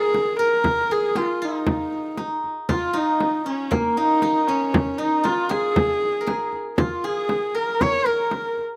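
Recorded outdoors and close, this short excerpt has a dry, open-air sound with almost nothing of a room around it, so every part sits up front. It is a solemn, windswept piece of Mongolian folk music in a straight 4/4 at 117 BPM, set in a Bb yu mode. A single horsehead fiddle carries the melody from Bb3 to Db5 with a husky, intimate tone, an airy bow, soft attacks, light vibrato and portamento, and a slapback echo trails its phrases. A steel-string zither, played with fingerpicks, shapes a silvery, ringing second line in the same range and carries its own slapback echo. A frame drum keeps time from 0.1 seconds with an acoustic, close-miked feel, and the zither's last notes ring on until 8.8 seconds.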